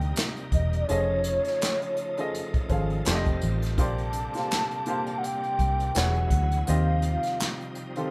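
R&B and neo-soul at 83 BPM with a swung sixteenth feel, this soulful, introspective passage sets a hollow, woody clarinet-like synth lead with chorus and vibrato over an intimate baby grand piano with audible action noise, a shouting tonewheel organ holding chords through a slow rotary speaker and light overdrive, a round, foam-muted fingered electric bass that stops at 7.2 s, and an airy acoustic drum kit of kick, snare, hi-hat and handclaps played with bundle sticks, all moving through Cm7, F7alt and Bb69 in a live room with moderate reverb.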